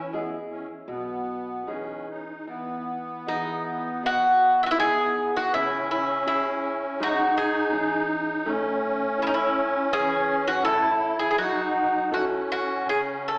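A metallic, double-strung Greek bouzouki carries the longing melody up front in this passionate fado-style ballad in E major, moving at a rubato 81 BPM over uneven beats, while a reedy, shimmering musette accordion with dark, smooth tone plays a second line. Beneath them, a fingerpicked nylon-string guitar with fresh strings and audible finger squeak supplies deep classical accompaniment through the chords Emaj7, C#m, A and F#m7, and a woody, growly pizzicato upright bass sounds only briefly in the background, from 0.1 to 1.9 seconds. A wet recital-hall reverb surrounds the parts, and the whole cut, taken from a longer piece, has an AM radio sound.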